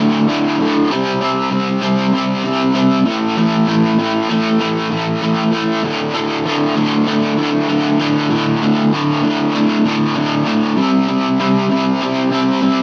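A dry, close recording with a 1970s studio character and a light touch of reverb puts a single overdriven electric guitar up front for this 12.8-second cut from a longer rock piece. The mood is driving and brooding, set at 97 BPM in a straight 4/4 feel, with the tuning sitting slightly sharp at A4 = 441 Hz. The guitar is bright and picked, double-tracked for thickness, and treated with a harmonic tremolo that gives its tone a pulsing shimmer. It carries the whole passage across a range of D2 to C4, moving through the power chords D5, C5 and A5 before returning to D5 at 5.8 seconds and landing on C5 at 10.8 seconds. The result is a gritty, focused guitar part that feels like a fragment of a bigger song.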